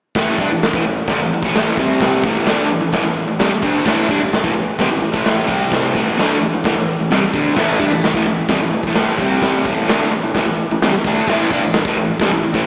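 A straight, driving 4/4 beat kicks off at 0.1 seconds, with a raw acoustic garage kit of punchy kick, medium-tuned snare, hi-hat and crash, sitting up front with a dark, smooth tone, a rolled-off top and the ring of a bright stone room. At 0.2 seconds a crunchy, overdriven electric guitar joins with a picked, double-tracked riff that ranges from A2 to D4 and carries a slapback echo. The riff swings between A5 and C5 chords, landing on C5 briefly before snapping back to A5, and the mood is swaggering and rowdy, like a garage rock duo or trio. The sound feels like a live gig heard through the venue's PA, with a recital-hall reverb and a small-speaker character. This is a single section cut from a longer piece; the drums run until about 12.6 seconds and the guitar until about 12.7 seconds.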